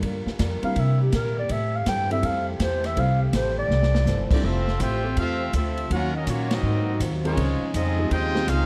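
Joyful and swinging, this short big band jazz passage in F major moves at 163 BPM in 4/4 with a swing feel on the eighth notes. A breathy, dark clarinet carries the melody from 0.6 s, its subtone sound intimate and whispered with vibrato and scooped notes, sitting up front yet roomy. A drum fill just before 4.1 s hands the tune to a bright, tight trumpet section with light vibrato, joined by a mellow trombone section on a second line, while a band accent lands at 6.5 s. Underneath, a growly, thumpy pizzicato upright bass sits prominently, the airy, polished drum kit offers a punchy kick along with ride and hi-hat, and a very quiet trombone section holds sustained chords throughout. A woody upright piano with short sustain and a boxy, picked archtop guitar fill in the background as the harmony turns from Gm7 and C7 toward richer chords such as Ebm9 and Dbmaj9#11. Light reverb and a dark production give the sound a cozy, mellow glow.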